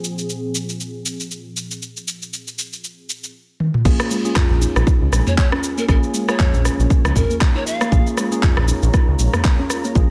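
Dry, this spiritual, earthy afro house excerpt opens with a detuned, chorused sawtooth pad pumping behind an up-front, tape-warm house drum kit of cabasa, handclaps, rim clicks, toms and crash cymbal, then after a drum fill the drop lands at 3.9 s with a punchy electronic kick, a smooth, saturated synth bass, a woody background kalimba arpeggio with tape echo and worn, slightly out-of-tune tine electric piano stabs, and from 5.3 s a breathy bamboo pan flute melody with vibrato and chiff.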